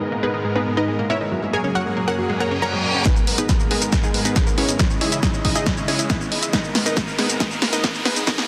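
A bright, detuned unison pluck carries the soaring melody of this emotional uplifting trance excerpt in G# minor at 138 BPM, pumping against a lush supersaw pad and a round, chorused analog pluck arpeggio in the background, while a reverse cymbal and riser rise from 2.3 s into a build-up where a punchy kick and analog drum machine with hi-hat, shaker and snare enter up front at 3.1 s, all set in a hall reverb and a dense, heavily limited master.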